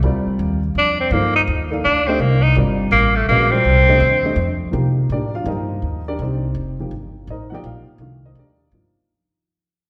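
A clear, vintage-toned tenor saxophone sits up front with vibrato and scooped notes from 0.8 to 4.6 seconds, carrying a hypnotic, intense modal jazz figure in C dorian at a swung 166 BPM in 3/4 over a thumpy, woody pizzicato upright bass on gut strings and a slightly detuned upright piano with audible action noise and long sustain, all bathed in the wet reverb of a concert hall as this excerpt from a longer piece fades out from 4.7 seconds.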